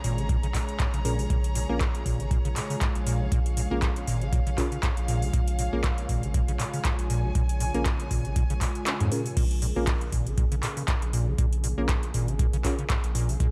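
Trippy and driving, this acid house excerpt moves at 119 BPM with a swung 16th feel in Bb minor pentatonic, built on an overdriven deep kick, a booming analog drum machine with metallic hats, handclaps and crash, a squelchy, resonant square-wave acid bass riff soaked in tape echo, and a thick, saturated sine sub bass, the two basses pumping against the sidechain. Above them, a warbling, nostalgic lo-fi pad holds sustained chords in the background while nasal, full-bodied chord stabs pluck through chorus and echo, and a dark, intimate bowed string section with vibrato adds texture until 9.4 seconds. The kick drops out briefly at 8.9 seconds before the drop lands at 9.4 seconds, and the whole mix stays dry and close.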